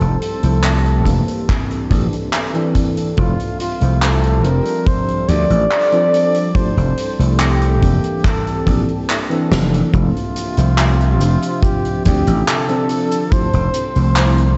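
Dreamy, woozy vaporwave in which a smooth-topped, jazz-style flugelhorn solo with vibrato and tape echo floats over a warbling, detuned, tape-like pad, a worn, slightly out-of-tune tine electric piano with lush chorus and delay, and a gritty, growly overdriven slap bass sitting up front, while a big-room acoustic kit with a fat snare, hi-hat, handclaps and cabasa is joined by a punchy kick that drops out at 9.1 seconds for a drum fill at 9.5 seconds, the mix soaked in hall reverb and hazy cassette softness.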